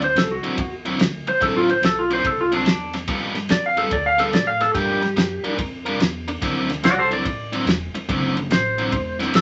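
A clean, twangy lap steel guitar carries the melody up front, its slide solo running the full 9.4 seconds with fingered phrasing and volume swells. This laid-back, rollicking electric blues shuffle swings along at 144 BPM in D mixolydian, and the passage is cut from a longer piece. Beneath the steel, a biting overdriven electric guitar picks a riff, also up front, while a woody, dark upright bass plucked on steel strings anchors the low end. A soul drum kit of kick, snare and ride cymbal gives a fat snare, a tight kick and a pumping room sound with a rolled-off top. The harmony moves from D9 to G9 at 3.1 seconds, then through Gm7 before returning to D9. A small, wet room reverb and vinyl crackle wrap the mix, and the highs are muffled.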